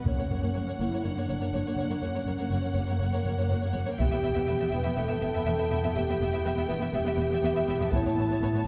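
Mellow French horns hold sustained chords in this epic, relentless cinematic orchestral passage, as a lush bowed violin section carries an expressive melody above a smooth second violin line, vibrato-rich violas with portamento, soft-attacked cellos set in the background and even double basses, while a compressed, saturated taiko ensemble strikes with hard sticks at 0.1, 4.0 and 7.9 seconds, a very quiet timpani sounds only at the opening, and the harmony moves from F# to Em to Aadd9, all heard from further back in a reverberant scoring-stage space.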